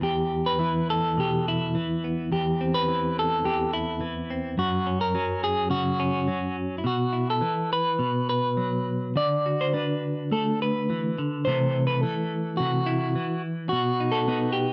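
Set in light reverb, this reflective, haunting folk fragment, cut from a longer piece, features a single clean electric guitar, twangy, picked and up front with a harmonic tremolo, moving freely in rubato around 106 BPM in E minor from Em through C/E, F#5, Bsus4, D and Am/C to a closing B at 13.7 seconds.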